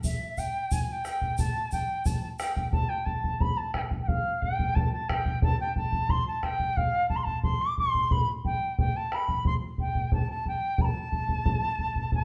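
A festive yet wistful Andean folk ensemble opens with a reedy, airy large quena carrying the melody over a deep, dark bombo and a grainy egg shaker. The music sits in A minor at 89 BPM in a straight 2/4. The shaker sounds only briefly, falling away at 2.5 seconds, while the quena and bombo continue together through the rest of this 12.2-second fragment of a longer piece. The wooden, end-blown quena ranges from E5 to D6 with gentle vibrato and a soft attack, and it sits up front despite a slightly distant quality. The bombo also sits forward, its deep, dark acoustic tone carrying the sense of a large room. The ensemble plays live in one stone-walled space whose one-second reverb lends a wet, resonant halo, and the sound is rolled off above 10.8 kHz.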